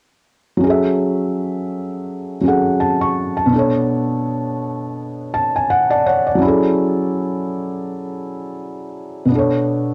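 Melancholic and nostalgic, this short hip hop excerpt with a lazy swung feel features a lone felt-muted upright piano, dark and intimate with thick felt and audible action noise, playing up front through cassette tape grain and a short studio reverb as it drifts between F#m9 and Bm9 chords, adding a fill from 5.0 to 6.4 seconds.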